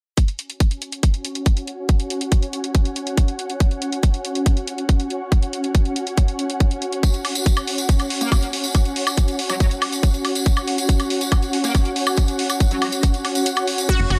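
An ethereal, airy pad with ensemble chorus and sidechain pumping floats up front from 0.9 seconds, spanning C#4 to F#5 over a tight electronic kick and a layered drum-and-bass kit of crash cymbal, hi-hat and woodblock in this hypnotic, driving psychedelic trance excerpt at 140 BPM in 4/4. A jingly acoustic tambourine joins at 7.0 seconds, and a metallic, aggressive FM wobble bass with chorus, high-pass filter and digital delay sits low in the mix between F#3 and A#3. After the kick drops out at 13.5 seconds, a bright, detuned unison pluck on F#4, a punchy sawtooth sequencer bass on F#1 and a barely audible swarming granular drone arrive in the closing moments.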